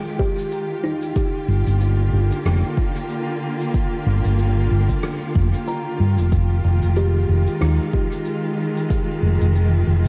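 Spacious and deep, this ambient dub excerpt moves at 93 BPM in F dorian with a gentle 16th-note swing, drifting from Fm9 to Gm7 and back to Fm9 at 6.3 seconds. A distant, bowed studio string section holds sustained chords with vibrato and portamento throughout, while a woody, close-miked kalimba plays thumb-plucked arpeggios through tape echo, dropping out after 1.3 seconds and returning at 5.7 seconds. An up-front, layered electronic kick anchors the beat alongside a faint shaker and rim click steeped in dub echo, and from 1.5 seconds a round, punchy hollow-body fingered bass with tube saturation sits up front, all within a dark production dusted with vinyl crackle.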